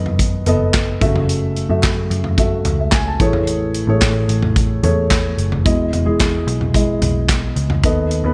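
Light reverb sets this short piano-driven pop excerpt in a modest space, and its top end is rounded off, giving the sound a soft, unglossy finish. The mood is uplifting and hopeful, moving at 110 BPM in a straight 4/4 in E major, with the harmony passing from B7 to F#m7 and settling on Emaj7 at 5.7 seconds. A dark baby grand piano carries the accompaniment up front, mellow and intimate, with audible action noise adding a vintage, close-up character. Beneath it, a muted picked electric bass gives a round, amped low end, while a modern studio drum kit sits forward in the mix with a punchy kick, a medium-tuned snare, hi-hat, toms and handclaps. A hollow, dry group handclap enters at 0.7 seconds and runs to 7.4 seconds, barely audible under the rest.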